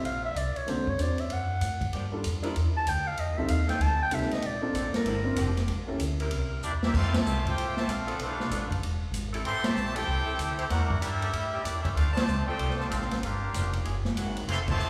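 Big band swing at a brisk 191 BPM, brassy and joyful, opening in D minor with a raspy, growling clarinet solo over grand piano, thumpy pizzicato upright bass and a punchy, natural drum kit, while a smooth saxophone section holds chords from 1.9 s. A clear, tight trumpet section enters at 6.6 s with the melody above a nasal, straight-muted trombone section's second line, and after a drum fill the music moves to F major at 6.9 s, with band accents punctuating the phrases. The band sits in a reverberant recital hall, and the passage is cut from a longer piece.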